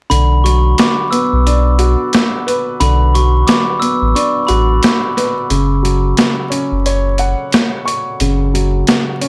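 A deep, round sine sub bass sits up front, its fast attack and sustained notes thickened by transformer saturation as it holds the low end until 8.8 s. This short boom-bap hip-hop cut moves at 89 BPM in 4/4 with a 60% swing on the sixteenths, and the mood is tough and moody. A dark, mellow baby grand piano, smooth and vintage through cassette tape, carries the accompaniment over a Bm chord that shifts to F#5 at 5.5 s. A glockenspiel struck with soft plastic mallets adds a metallic, bell-like, ringing melody high in the register until 4.8 s. The sampler-style kit of hi-hat and a high-tuned, compressed snare was re-recorded in a large room yet stays up front. The overall sound is dry and gritty, like a hardware recording, with vinyl crackle and little reverb.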